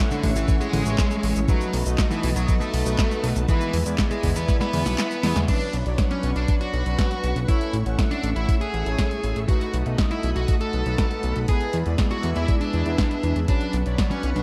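Chorused, tape-tinged analog synth brass stabs open this nostalgic, bittersweet italo disco excerpt at 120 BPM. They are joined almost at once by a lush, bright string machine sitting in the background with ensemble chorus and shimmer reverb, and a dark, overdriven lead guitar melody. Underneath, a fat, detuned sawtooth bass and a gritty, thumpy electronic kick sit up front, with a punchy house kit of snare, hi-hat, handclaps, cabasa, toms and crash. Chords move through A, B7, E and Bmadd9 in a dark production. A drum fill runs from 4.5 to 5.5 seconds, the kick drops out briefly, and a band accent at 5.4 seconds leads into the second section.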